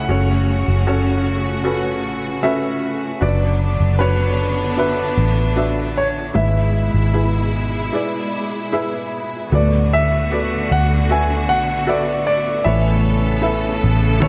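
Set in a lush hall with a big arena sound, this emotional, heartfelt pop ballad excerpt carries its melody on an intimate concert grand piano with long sustain and a slapback echo, over a soft felt-muted upright piano with audible action noise, smooth bowed symphonic strings with vibrato, and a dark, round, punchy vintage electric bass up front, moving from F#m through Bmadd9/F# and E/G# to D6 and Aadd9, with a break from 7.9 to 9.5 seconds and dry acoustic toms arriving at 14.2 seconds.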